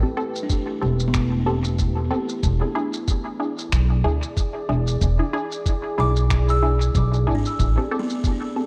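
A deep, dark, detuned ambient pad holds chorused, reverb-washed chords from the start of this hazy, meditative ambient dub excerpt at 93 BPM in A minor with a swung 16th feel, alongside bright filtered dub chord stabs with phaser and dub echo, over an Am7 to E7 progression in a light room reverb. A buzzing, hollow kalimba playing arpeggios through a low-pass filter and tape echo follows, together with a tape-warm electronic shaker and finger snaps with dub echo and a thumpy, muffled electronic kick drum, before a woody pizzicato upright bass enters up front at 0.8 seconds.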